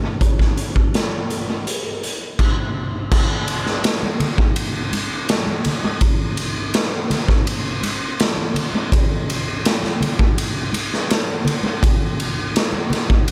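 A gritty, saturated garage drum kit sits up front with a boomy kick, a medium-tuned snare, hi-hat, ride and crash, the whole kit soaked in analog delay, while damped, high-tuned congas slip in behind it at 4.0 seconds in this trippy, hazy 83 BPM rock cut, whose dry, echo-heavy mix keeps reverb to a minimum.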